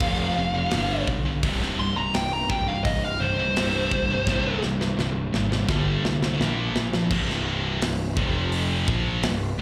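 Heard as a live gig through a club PA with light reverb, this heavy, epic metal clip puts a dark, overdriven lead guitar solo up front, carrying slapback and tape echo until 4.6 s, over a very quiet double-tracked fuzz guitar riff that drops out at 7.1 s, two bright, picked high-gain guitar riffs (one scooped and set in the background with slapback), a punchy fuzz-overdriven bass, and a tight, big-room acoustic drum kit with a medium-tuned snare and a fill leading into the closing section.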